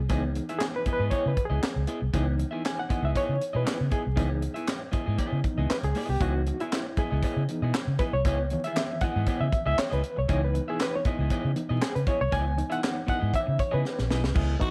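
A barky, reedy electric piano with light overdrive and fast tremolo takes the lead from the start, soloing over a C#m9 groove while a slightly broken-up picked electric guitar adds accompaniment and a dark, foam-muted fingered bass sits round and up front. This cut from a cool, sly funk piece in C# minor moves at 118 BPM in a straight 4/4, driven by a tight, natural drum kit with high-tuned snare, hi-hat, handclaps and crash, plus a distant metallic cowbell in the background. The dry mix carries vinyl crackle, and after a drum fill from 13.8 seconds, a raspy, growling tenor saxophone breaks in for a single note at 14.6 seconds.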